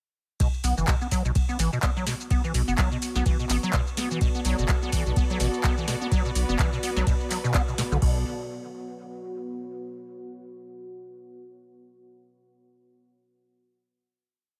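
A lightly reverberant mix opens this short, complete acid house piece, driving and raw at 126 BPM in B minor with a swung 16th feel. From 0.4 seconds a deep, tape-warm, up-front electronic kick pounds four-on-the-floor alongside a booming analog drum machine of crisp snare, handclaps, metallic hats, shaker, ride and crash, its snare, clap and hats set in a short room. A squelchy, hollow square-wave acid line with resonant filter sweeps and accents runs a 7-step loop that drifts against the bar, colored by ensemble chorus and delay, while a thick, saturated sine sub bass plays a syncopated riff beneath, pumping to the kick. A moody sawtooth pad with chorus and its own reverb arrives at 2.1 seconds with slowly shifting chords, and at 4.2 seconds a clear, lush studio string section adds bowed sustained chords with vibrato, both breathing with sidechain pumping over a Bm7 harmony. The drop gives way at 8.0 seconds to a final B5 chord, where the dark pad hangs on alone until the close.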